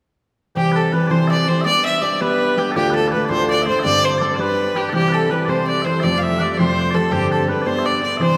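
A clear, nasal fiddle with light vibrato carries the bowed melody up front in this lively, cheerful Celtic folk excerpt in a straight 6/8, joined by a sweet, mellow small bagpipe holding a continuous second line. Underneath, a full-bodied jumbo steel-string acoustic guitar picks the accompaniment with audible finger squeak through a progression that settles on C, G, Dm and Fadd9 with suspended turns. All three parts enter at 0.6 s and play through to 8.4 s, bathed in the long, lingering reverb of a church.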